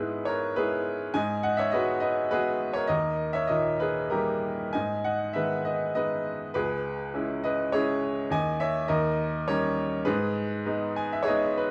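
Bittersweet and moody, this short passage of lyrical classical solo piano moves in a rubato 3/4 around 102 BPM in G# minor, tuned to A4 = 442 Hz. A bright, woody upright piano sits up front with long sustain, ranging from C#2 to G#5 as its harmony travels from E/G# through G#m7, D#, C#m and D#7 back to G#m, with a fill from 10.6 seconds. Light reverb and a dark, warm production give the brilliant tone a shadowed, intimate frame.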